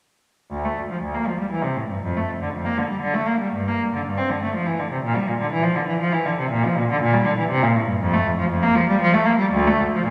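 A lone bowed cello with a nasal, reedy gut-string tone plays in period style from 0.5 to 10.1 seconds, moving through its low and middle register in a solemn, flowing baroque-style suite movement in three. The phrasing is rubato, with uneven beats that let the line breathe. The cello sits up front in a recital hall whose reverb gives the sound a lingering wet glow, and the passage is cut from a longer piece.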